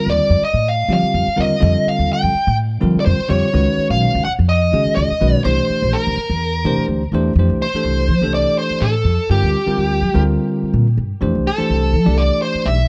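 Slick and soaring, this short jazz excerpt cut from a longer piece moves at 125 BPM in 4/4 with a light swing on the sixteenths. It opens in F mixolydian over chords like F9sus4 and Db9sus4, then settles into F major at 7.4 seconds, where Fmaj7 and Gm7 take over. A smooth, dark, overdriven electric guitar carries the melody up front, its picked lines ranging from G4 to G5. Beneath it, a clean, bell-like tine electric piano supplies direct, bright accompaniment, while a woody, thumpy upright bass with steel strings is plucked pizzicato and sits up front as well. The sound is dry and close, with little reverb, in the manner of a 1970s studio recording.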